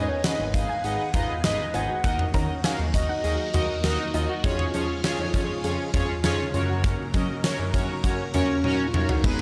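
A straight 4/4 groove at 100 BPM drives this cool synth-pop excerpt. A huge arena drum kit enters at 0.2 s with punchy kick, fat snare, hi-hat, toms, cowbell and crash, and plays a fill at 8.6 s, over a smooth, mellow synth bass and chords moving from Abm through Ebm and Db/F to Gb. A hollow, woody clarinet-like synth lead carries the melody with vibrato and chorus, drops out after 4.1 s and returns briefly near the end, joined at first by a very quiet, warbling, lo-fi pluck on a second line, while bold, brassy analog synth brass with chorus sits up front, a swirling string machine with phaser and ensemble chorus holds sustained chords in the background, and a very quiet fingerpicked nylon-string guitar adds arpeggios, all in a dry, gritty recording with light reverb.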